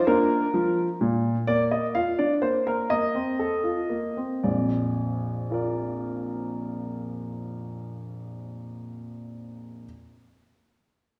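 A clear baby grand piano plays alone in this short classical-period sonatina, cut from a longer piece, with an elegant, playful character in a straight three-beat metre. The piano sits up front with an open tone and long sustain, ranging from deep bass notes up into the bright upper register. The harmony rests on the home chord at the start, moves to a dominant seventh over a tonic bass around 2.9 seconds, and settles home again at 4.4 seconds. The pace eases back between 0.8 and 4.4 seconds, giving the phrase a graceful sense of breathing before it resolves. A wet recital hall reverb surrounds the instrument, and the sound is heard from further back in the room, lending the performance a spacious, concert-like feel across its roughly ten seconds.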